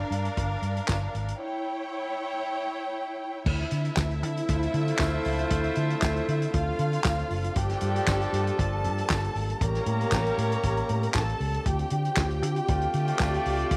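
Light reverb frames this driving, danceable disco excerpt in D minor at 117 BPM, where a lush, bowed string section with vibrato, a round, foam-muted fingered electric bass and a dry soul drum kit with a fat snare, punchy kick, hi-hat, handclaps and crash cymbal all sit up front, joined by a jingly tambourine in the background, until a break gives way at 3.5 seconds to a tight, dark French horn section holding sustained chords and then, from 4.5 seconds, a distant, roomy pop-style horn section adding stabs over chords moving from Gm7 through Dm9 and A7b9 to Dm7.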